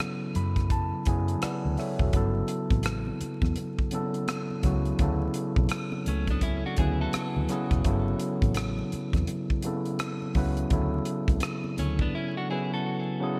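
Soulful and relaxed, this neo-soul R&B excerpt at 84 BPM in G lydian swings gently on the 16ths as a barky, gritty overdriven tine electric piano with subtle chorus opens with a fill and moves between Dmaj9 and rootless Gmaj9 chords. It is joined by a tight, dry funk kit of hi-hat, kick and rim click under gated reverb, a dark, round, foam-muted fingered electric bass, very quiet high-tuned congas from 2.1 seconds, and a clean, scooped, picked electric guitar with lush chorus and digital delay from 6.1 seconds, all set in bright 1980s-style digital production with light reverb and vinyl crackle.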